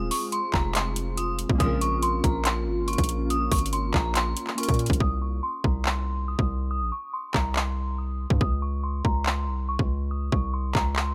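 A menacing, melancholic trap cut in C phrygian at 141 BPM with a half-time feel, drawn from a longer piece. An eerie, inharmonic FM bell carries the melody high up throughout, its detuned tone softened by chorus, phaser and a low-pass filter, while a warbling, nostalgic lo-fi synth keys part accompanies it and a glassy, ethereal FM pad sits in the background over the opening Fm and Bbm chords. Up front, a heavy, aggressive distorted 808-style bass with a noisy edge anchors the low end, joined at 0.1 seconds by a trap kit of hard-clipped kick, metallic hi-hats and handclaps with a tape-warm, produced character. A brief, lush bowed string stab with vibrato appears at 1.6 seconds. At 5.0 seconds the keys and pad stop and a break begins, leaving the bell, bass and drums to move through Cm and a rootless Bbmadd9 inside a digital ambience.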